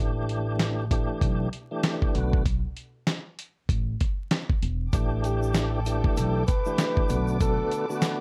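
A dark, warm production with vinyl crackle and light reverb frames this reflective boom-bap hip-hop fragment, cut from a longer piece and played with a swung sixteenth-note feel. A lightly overdriven tonewheel organ with key click, chorus vibrato and a fast rotary speaker sits up front, joined by a woody pizzicato upright bass. A gritty, compressed sampler-style drum kit, with a thumpy kick and a medium-tuned snare, sounds re-recorded in a small room. The harmony moves between A7sus4 and Bm7, with a break midway through. At 4.9 s a lush bowed string section with vibrato and portamento enters in the background, along with a grainy, bright tube shaker, and at 5.2 s a bucket-muted trumpet takes a veiled, forceful jazz-style solo with a smooth top and slapback echo.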